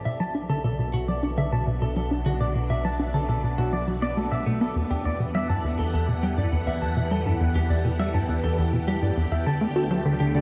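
A swirling string machine fades in over a punchy sequencer bass riff and a deep, round sub bass, setting up hypnotic, cosmic space music at 102 BPM in a straight 4/4. From 0.1 seconds a clean, twangy electric guitar plays picked arpeggios through tape echo. Meanwhile the phased, chorused strings hold sustained chords moving from Bm7 to Em7 at 4.8 seconds and Dsus4 at 9.5 seconds, and a filter sweep runs over the sequencer bass, all inside a huge ambient reverb and a dark production in this cut from a longer piece.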